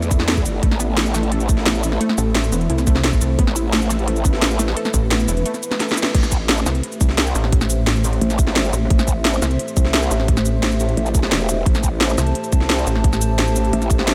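A growling, saturated bass sits up front in this tense, mechanical drum and bass cut from a longer piece, its detuned, formant-filtered tone wobbling aggressively over the low end. From 2.2 seconds a second, heavy wobble bass pulses alongside it, adding a compressed, chorused weight. The drums are tight and tape-coloured: a layered electronic kick drives the groove, and a kit of cracking snare, crisp hi-hats, cabasa and crash cymbal fills out the pattern. A drum fill and a band accent mark the turn into a second drop. In the background, a deep, moody sawtooth pad holds sustained chords throughout, while a lush, punchy unison pluck plays arpeggios through analog delay until 6.1 seconds, both breathing with sidechain pumping. At 6.6 seconds a warbling, nostalgic, lo-fi pad enters high above, pumping along with the deep pad under a light reverb.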